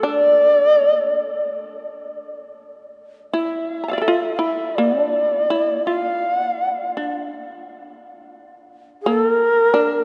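A bright, reedy shakuhachi carries the melody from Bb4 to F5, its airy bamboo tone marked by a crisp, breathy chiff and vibrato, while a mellow, buzzing shamisen plays a plucked second line spanning Bb3 to Bb5. This excerpt of austere, calm Japanese chamber music moves at 83 BPM in 4/4 with a rubato, uneven pulse. A long cathedral reverb of 6.3 seconds bathes the whole 10-second passage in a cavernous, lingering space.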